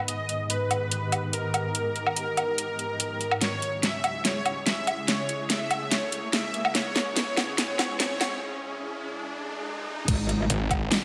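An evolving, morphing wavetable pad with chorus, tremolo and sidechain pumping opens this heavy, chaotic half-time wobble dubstep excerpt at 144 BPM, soon joined by a smooth, detuned supersaw melody with delay, an up-front dubstep kit of huge snare, metallic hats, crash and woodblock, and background risers and swells that build over G#m and C#m until the impact at 10.1 s, where a knocking kick and a saturated FM wobble bass hit briefly in a lush hall, followed moments later by a snarling, growling saw bass.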